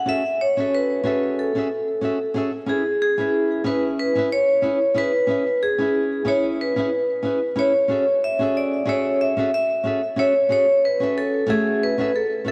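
Wistful and gently warm, this chillout piece moves at 92 BPM in 4/4 with a soft swing on the sixteenths, settled in F# minor and tuned a touch below standard pitch. A vibraphone struck with medium hard mallets carries the melody from the start, its metallic, ringing tone smooth and dark, shimmering with a slow motor vibrato and sitting up front. Beneath it, a fingerpicked nylon-string guitar supplies full-bodied, classical accompaniment, also placed close and forward, joining at 0.1 seconds. Both instruments are touched with digital delay, and a lush hall reverb wraps the pair in a long, wet tail. The harmony drifts from F#m9 to C#m7 and returns to F#m9 as a new section opens at 7.9 seconds, before this cut from a longer piece ends at 12.5 seconds.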